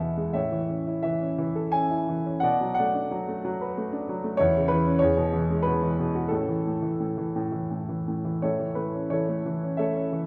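Moving in a flexible, rubato three-beat pulse, this lyrical classical solo piano passage, cut from a longer piece, carries a sunny, warm mood across about 10.3 seconds. The concert grand sits up front with a deep bass and a slightly boxy body, opening with a brief fill before gliding through A, Bm7, C#m7/E and Eadd9 and settling back on A at 6.3 seconds. A wet recital-hall reverb surrounds the piano with the spacious air of a church or concert hall.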